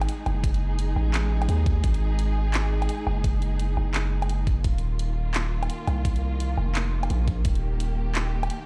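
Half-time drum and bass with a heavy, tense mood, cut from a longer piece and built around a deep, sine-like 808-style bass that sits up front with a fast attack and long decay, and a knocking electronic kick entering at 0.4 seconds. A layered, produced drum kit adds handclaps, hi-hat and woodblock in a small room ambience, while a lush bowed string section holds sustained chords with vibrato and portamento, roughened by vintage 12-bit sampler grit and sidechain pumping. The mix has little reverb of its own yet sounds as if played on a big sound system in a bare room, with the chords moving from G#5 to D#6 at 4.6 seconds.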